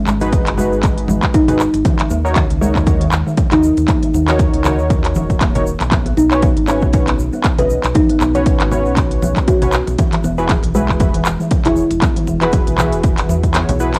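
A hypnotic, spiritual afro house passage opens with a woody, hollow kalimba spinning arpeggios through cassette tape and analog delay, carried on a round, deep analog bass, close and dry congas, a grainy egg shaker tucked in the background, and an afro-pop kit of handclaps and smooth hats. Detuned analog keys add mellow stabs coloured by chorus and 12-bit sampler grit, pumping against an overdriven, punchy electronic kick that sits up front with the sound of a large room. The chords move from G#m7 through D#m7 and Bsus2 to Eadd9, and the kick drops out at 13.5 seconds on a band accent, all with the light reverb and hazy tape character of a home cassette recording.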